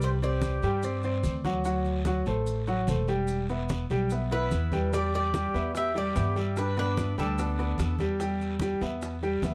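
A sunny Cuban son and guajira passage opens with a metallic, picked Cuban tres melody and a breathy jazz flute second line, both falling silent at 1.0 seconds and returning at 4.3 seconds, over brilliant up-front grand piano arpeggios, a woody, thumpy pizzicato upright bass, very quiet hard-handed congas, and a raspy guiro and grainy maracas in the background, with round, low-tuned bongos joining at 4.9 seconds, the tres carrying tape echo within a dark, warm production with light reverb.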